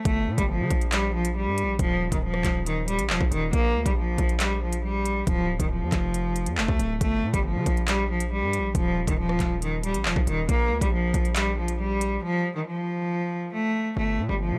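A lone bowed cello opens this cold, tense drill excerpt, its clear, earthy tone carrying a light vibrato and trailed by an analog delay. Almost at once a heavy, distorted 808-style bass arrives with a fast attack, its saturated sine body and layer of noise decaying under each note. The electronic drum kit comes in alongside it, overdriven and up front, with a knocking kick, crisp hi-hats, handclaps and rim clicks in a half-time feel. The harmony cycles through Gm7, Ebsus2, Bb5 and Dm before the drums drop out for a break from 12.2 to 14.0 seconds, leaving cello and bass over a brief unharmonised gap until Gm7 returns. The mix is dry and gritty, with little reverb, and the passage is cut from a longer piece.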